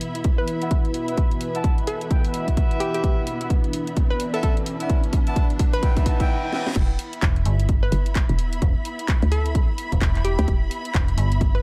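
Aggressive and gritty, this swung bass house cut at 129 BPM in E minor builds from the start with a sweeping resonant pad, lush bowed symphonic strings, a detuned hollow square pluck melody with tape echo, bright filtered horn stabs, a punchy up-front kick and a tape-warm house kit with cracking snare, handclaps, hi-hat and crash, while a riser and reverse cymbal sit in the background, then drops at 6.8 seconds into a pumping low end where a bouncy, knocking FM bass and an overdriven metallic FM bass carry the groove beneath the strings and pluck.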